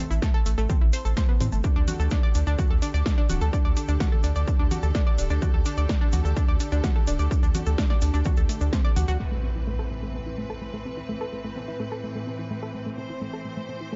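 Melodic techno with a hypnotic, dark mood, this short excerpt opens on a detuned sawtooth pluck arpeggio with chorus and dub echo, pumping over a round, nasal analog bass, an overdriven heavy kick, a punchy-snared techno kit with congas and hi-hat, and a grainy tube shaker in the background. A bowed studio string section with vibrato enters at 1.6 seconds, holding smooth sustained chords as the harmony moves from Am to Dsus4. By 9.2 seconds the drums, bass and shaker have dropped away, leaving pluck and strings over an Amadd9 chord while an electronic impact sounds, all within a dark production.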